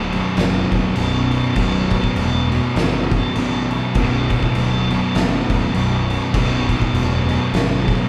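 Stoner and doom metal with a hypnotic, sludgy mood at 101 BPM in 4/4 with a swung feel, this short cut from a longer piece sits on B minor as two thick fuzz guitars and a bright, double-tracked distorted electric guitar grind out a picked riff in the background over a growly, overdriven fingered bass, while an oversized low-tuned drum kit with a punchy kick, fat snare and dark crash cymbal stands up front, all played live in one room with a moderate large studio reverb.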